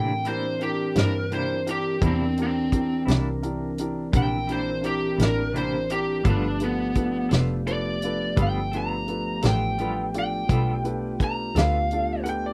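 A picked, overdriven lead guitar through a small cranked amp carries the melody up front in this gritty, laid-back slow blues, moving at 57 BPM in a straight 12/8 across a short excerpt cut from a longer piece. Beneath it, a twangy clean electric guitar with tremolo and a boxy, woody upright piano fill in the accompaniment, while a soft, flute-like tonewheel organ holds sustained chords through a slow rotary speaker. A bowed double bass with vibrato gives a smooth, focused low end, and a soul drum kit with a fat snare, tight kick, hi-hat and rolled-off top sits close and mid-forward, entering at 0.2 seconds. The harmony moves from C9 to G9 at 6.3 seconds, and at 12.2 seconds a brilliant, polished second upright piano slips in with a brief, ringing line. The sound is dry and close, a 1970s-style studio recording with only light reverb.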